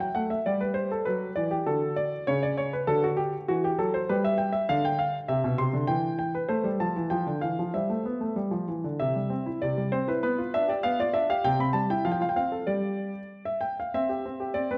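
A dark production places the piano in a wet recital hall with a 1.4-second reverb tail, yet the concert grand stays clear and up front, its worn, natural tone carrying a deep bass from B2 up to C6. This graceful, cheerful classical-period sonatina moves at 98 BPM in a straight 2/4, with the solo piano settling into C major from 4.1 s after opening on Em9 and D. Its second half, from 9.0 s, turns through C, G7/B and F before the excerpt breaks off at 14.8 s.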